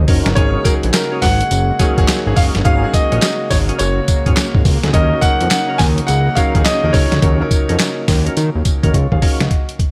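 Bouncy and flirty, this short R&B fragment in a new jack swing style moves at 105 BPM in 4/4, with a 63% swing on the 16th notes. A gritty, sampler-style boom bap kit sits up front, pitched down and compressed, with a thumpy kick, a medium-tuned snare, hi-hat, handclaps and tambourine; it opens with a drum fill and adds another at 8.9 seconds. Underneath, a fat analog bass blends sawtooth and square waves into a thick, nasal, saturated tone with a fast attack. A concert grand piano carries the melody in a warm, open voice with long sustain and a touch of delay. A clear, polished second grand piano, its action noise audible, plays accompaniment further back, joined by a smooth analog pad with chorus and a lightly overdriven tonewheel organ adding percussive stabs with key click, chorus vibrato and a slow rotary speaker. The harmony shifts from Ab9sus4 to Ebm7 at 4.9 seconds, all within a digital ambience.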